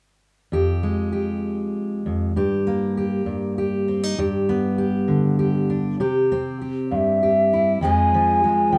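Intimate and melancholic, this fragment of a folk piece in F minor moves at a slow 66 BPM in a straight 6/8, with an up-front, full-bodied jumbo steel-string acoustic guitar fingerpicked from 0.5 s, its fresh strings ringing through chords from Fmadd9 to a closing Fm, before a pure, bamboo-toned bansuri with soft attack and vibrato enters up front at 6.9 s to carry the melody, all set in a moderate studio reverb.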